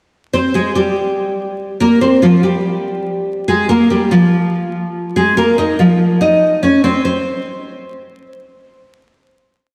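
A half-time 4/4 pulse at 143 BPM carries this tense, ominous drill hip hop piece in C phrygian, where a bright, full-bodied nylon-string guitar with a deep classical tone plays alone from 0.3 s, fingerpicking a looping melody doubled in octaves and repeated like a sampled loop over C5 and then Bb5 chords, its lush chorus sitting up front in a dreamy mix soaked in hall reverb and vinyl crackle, until the chords fall away at 7.0 s for a final note and the guitar stops at 8.3 s.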